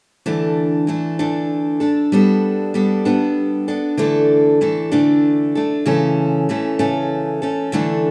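A moderate recital-hall reverb surrounds a full-bodied picked steel-string acoustic guitar, heard up front in this short, gentle folk excerpt cut from a longer piece. In a straight 6/8 at 64 dotted-quarter beats per minute, the guitar carries the accompaniment from 0.3 to 8.1 seconds, moving through Dsus2, Gadd9, back to Dsus2 and onto A/C#. The open, suspended harmonies give the passage a calm, pastoral mood.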